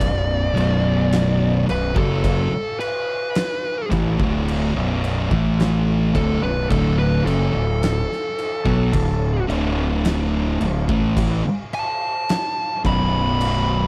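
Ominous and heavy, this 13.9-second excerpt of slow stoner and doom metal at 54 BPM in B minor has a dark, up-front fuzz lead guitar soloing with slapback echo over a thick, double-tracked fuzz guitar riff, a growly overdriven fingered bass and an oversized low-tuned drum kit with a boomy kick, fat snare and gritty, pumping room sound, moving from Bm to D5 at 6.7 seconds and B5 at 12.8 seconds in a dry mix.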